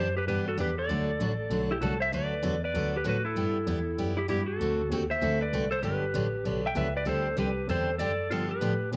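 Country western swing with a swinging, down-home mood, cut from a longer piece. A dark, clean electric lap steel carries the melody with compressed slide lines and volume swells. Beneath it, a bright, full-bodied acoustic guitar plays picked accompaniment, and a bowed double bass, rich with vibrato and portamento, holds the low end, all three up front in a moderate spring reverb.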